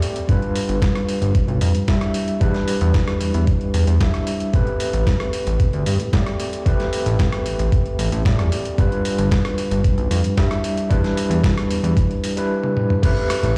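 Sleek and cosmic, this 113 BPM nu-disco excerpt in A minor sets a bright, barky overdriven tine electric piano with medium tremolo, sidechain pumping and digital delay over a fat, detuned sawtooth analog bass with a filter sweep, a gritty dusty soul sampler-style drum kit and a thumpy overdriven electronic kick, all moving through G7, Em7 and Am9 in a stone-room reverb before a drum fill at 12.6 seconds.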